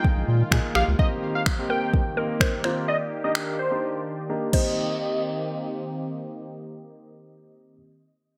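A bittersweet yet confident dance-pop fragment, cut from a longer piece, moves at a steady 127 BPM in 4/4 with a straight feel, with bright 1980s-style digital production and a light digital ambience. Two melodies share the top: a plucky, catchy unison lead with a punchy, detuned sawtooth edge and sidechain pumping, sounding until 6.1 seconds, and a woody, round FM mallet-like pluck with a warbling, vintage chorus that sits mellow in the background. Beneath them a clear, intimate grand piano with audible action noise plays the accompaniment, while an evolving, resonant sawtooth pad sustains the chords, the harmony moving from a suspended Bb7 through Cm7 and Ebmaj7 back to Cm7. A smooth R&B drum kit of soft kick, finger snaps and crash cymbal sits up front with gated reverb and stops at 4.6 seconds, and a deep, thick, saturated sub bass appears only briefly near the start. A filter sweep runs through the opening passage, followed by a short silent gap at 4.3 seconds before the second section arrives.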